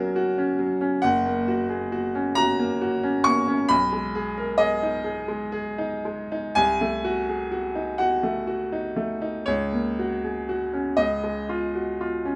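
A bright upright piano carries this short cut from a longer romantic nocturne, its woody, vintage tone sitting up front with a smooth, brilliant edge. The mood is dreamy and serene, unfolding in 12/8 at a slow 38-46 BPM counted in dotted quarters, with a free rubato feel. Set in F# major and tuned to A4 = 443 Hz, the solo part ranges from F#1 up to C#6 across its 12.4 seconds. The harmony moves from F#/A# to F#, then through G#m/B at 3.7 seconds and Cdim7 at 6.6 seconds before settling on F#/C# and C#. A light reverb gives the instrument a gentle sense of space.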